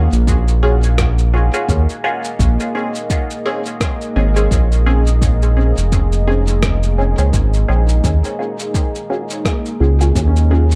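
A loping 4/4 groove with a swung sixteenth-note feel drives this spacious, hazy ambient dub excerpt, anchored by a deep, tape-warm electronic kick and a muffled, pitched-down cabasa and rim click dusted with dub echo. A round, up-front analog bass sits beneath a dark, slow-blooming pad with chorus and its own reverb, while muted, detuned chord stabs pluck and decay through phaser and dub echo over Ebm11 and Bbm9 harmony. The mix is echo-heavy with little reverb, and at 10.3 seconds a soft, felt-muted upright piano slips in at the back.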